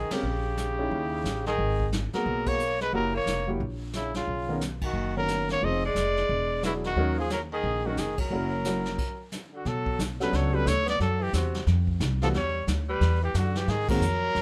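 Late-night and cool, this small-group swing and bop excerpt moves at a brisk 178 BPM in 4/4 with a lilting swung feel. A punchy, up-front trumpet carries the melody with light vibrato and a plate reverb sheen, while a clear tenor saxophone sits farther back in the room on a lower second line. Pizzicato upright bass with a woody tone anchors the bottom, and a baby grand piano adds natural, long-sustaining accompaniment. A vintage brush kit sounds distant and roomy, with dark cymbals, a medium-tuned snare and a punchy kick. The band hits shared accents throughout, stops from 9.0 to 9.7 s, then settles into B minor over chords such as Bm9 and Em9, all in light reverb with a warm, rolled-off top on the drums.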